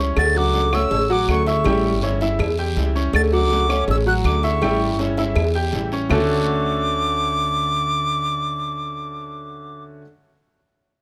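Latin music in the Cuban son and guajira style, this short, danceable excerpt moves in a straight four with a warm mood. A reedy silver concert flute carries the melody up front, its airy metal tone marked by vibrato and a crisp attack, while a bright grand piano spills brilliant arpeggios with long sustain, audible action noise and a touch of tape echo. Beneath them, a fingerpicked flamenco guitar adds warm acoustic accompaniment, and a dark, thumpy pizzicato upright bass anchors the low end up front. Woody claves and round low-tuned cowbell and bongos played with soft hands sit in the background alongside a raspy guiro until all three drop out at 6.2 seconds, leaving flute, piano, guitar and bass for the closing passage over Dmaj7 harmony. Close, detailed microphones and light reverb shape the recording.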